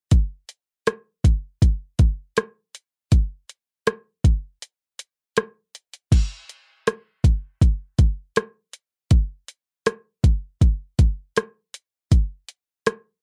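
A smooth R&B drum kit, electronic, produced and tape-warm with a soft kick, warm hi-hat, rim click and crash cymbal, sits up front in this heartfelt, emotional pop excerpt in a straight 4/4, playing from 0.1 to 13.0 seconds in a dry, close 1970s-style studio sound with little reverb.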